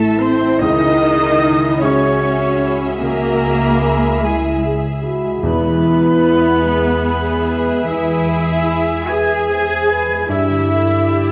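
A mellow French horn section holds sustained chords at the front of this sorrowful, rubato film-score fragment in 6/8, while muted violin sections carry a veiled, con sordino melody and a second line alongside a distant clarinet and a pure, silver-toned flute. Beneath them, dark viola, cello and double bass sections, a clear grand piano with audible action noise and a ringing, fingerpicked harp fill out the accompaniment, and a very quiet, dry timpani enters at 5.4 s as the harmony moves to E. The whole cue sits in a wet scoring-stage reverb and carries the warbly pitch drift of worn old cassette tape, giving it a moving, faded quality.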